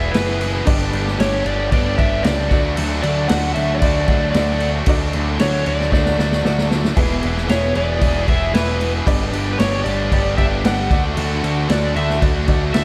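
A straight 4/4 groove at 114 BPM drives this swaggering classic rock excerpt: a vintage drum kit with a punchy kick, medium-tuned snare and dark crash cymbal enters at 0.1 s, and a growling, overdriven picked bass sits up front. A bright, double-tracked distorted guitar riff with slapback echo and a very quiet, woody upright piano support an overdriven slide guitar melody trailed by tape echo, while a boxy, shimmering twelve-string acoustic guitar joins at 7.0 s, just after a drum fill. The chords cycle through E, G and D, and a lush hall reverb gives the mix a big arena sound.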